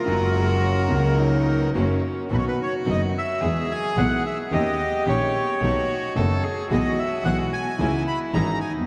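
A reedy, boxy bandoneon carries the melody up front in this passionate, dramatic tango fragment in B major at 109 BPM in 4/4 with a rubato feel, while a rich, gut-string bowed cello with tape echo sings a second line, an intimate concert grand piano with audible action noise and deep bass accompanies, a distant, earthy bowed double bass holds the low end, a very quiet, biting symphonic string section adds lush stabs, and a mellow vibraphone with soft mallets and slow motor vibrato appears only from 0.4 to 2.3 seconds, the whole dreamy mix soaked in cathedral reverb.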